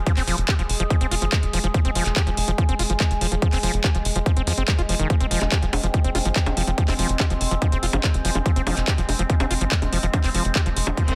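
A tight, up-front electronic kick drives this alien, psychedelic trance excerpt, joined by a layered kit of bongos, handclaps and metallic hats, plus a punchy, nasal sequencer bass with a plucked filter. Above them, an overdriven acid bass plays a squelchy, gritty riff with tape echo and sidechain pumping, while a ring-modulated drone holds sustained chords whose overtones keep moving, treated with chorus and reverb. The mix is dense and heavily limited, and a brief reverse cymbal sounds at 11.0 seconds.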